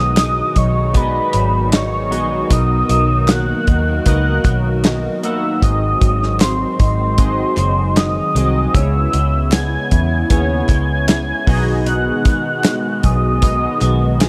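Indie pop with a bedroom pop haze, this sunny, hazy excerpt in straight 4/4 drifts through a loop of jazzy seventh chords, opening on G#m7/B and moving through Bmaj7, G#7 and C#m7. A soft octave-layered synth lead carries the melody high up, its full, round tone thickened by a sub octave, gentle vibrato and analog chorus. Underneath, an electric guitar through a small old amp adds slightly broken-up, compressed picking with a warbly pitch drift, while vintage analog keys bring an airy, sawtooth-edged sound with cassette-tape wobble and a filter sweep. A hollow, flute-like pad holds sustained chords in the background, and a foam-muted fingered electric bass sits up front with a dark, rounded, amped tone. From 0.2 s, a damped 70s drum kit with a tight kick and medium-tuned snare joins alongside crisp group handclaps tucked behind, all in an intimate, close-sounding mix with very little reverb.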